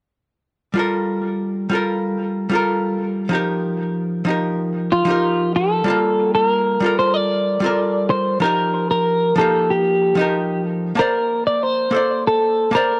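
A clean, fingered electric guitar carries the melody from 4.9 seconds, sitting up front with a subtle chorus and tape echo over this wistful chillout excerpt in G minor at 94 BPM. Beneath it, a dark, picked hollow-body archtop guitar, compressed and treated with analog delay, plays the accompaniment from 0.7 seconds, moving through Gm9 and F9sus4 before settling on Bbmaj9. Light reverb colours the dry, gritty recording, which is cut from a longer piece.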